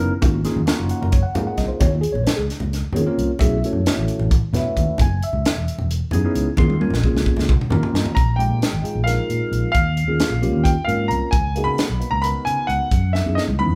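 This cut from a nocturnal, driving electric jazz fusion piece opens with a clean, phased tine electric piano, a growly, punchy fretless bass and a tight funk drum kit with a high-tuned snare. Low-tuned congas sit in the background, and the band moves at 265 BPM in 7/8 over mostly suspended thirteenth chords in Eb phrygian. During a drum fill the congas stop at 7.8 s, and at 8.1 s a clear grand piano enters up front with the melody as the key shifts to Bb phrygian, the whole band playing live in one large studio room with moderate reverb.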